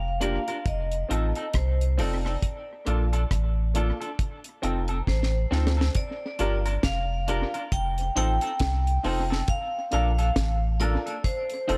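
Hypnotic and meditative, this short cut from a longer roots reggae piece moves at a relaxed 68 BPM in 4/4, with a swung sixteenth-note feel and a cycle of Gm7, F7 and Bbmaj7 chords that repeats across two sections, the second beginning at 6.0 seconds. A round, sine-like sub bass sits up front from the very start, deep and sustained with a fast attack, while a vibraphone played with hard mallets carries the melody in a metallic, ringing voice with medium motor vibrato and tape echo. The deep reggae drum kit is dry, dark and smooth, its high-tuned snare, tight kick, rim clicks and hi-hat given a rolled-off top and analog delay, and it rolls through a fill between 5.1 and 6.0 seconds. A clean, twangy electric guitar adds compressed, picked accompaniment bathed in spring reverb and tape echo, sitting lowest in the balance. An intimate upright piano punctuates with woody, natural stabs where the action noise is audible. 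The overall mix is echo-heavy yet close, with little room reverb, giving the groove a warm, spacious calm.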